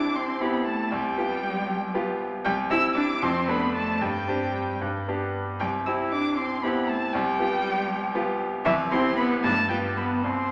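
Bathed in a lush scoring-stage reverb, this spirited, graceful classical-period movement for piano trio in C major moves quickly at 78 BPM in a rubato 6/8, with a veiled, close con sordino violin singing the melody from E5 to E6 with vibrato over a dark, smooth-topped muted cello second line, while an up-front, brilliant grand piano with short sustain supplies the accompaniment in this passage cut from a longer piece.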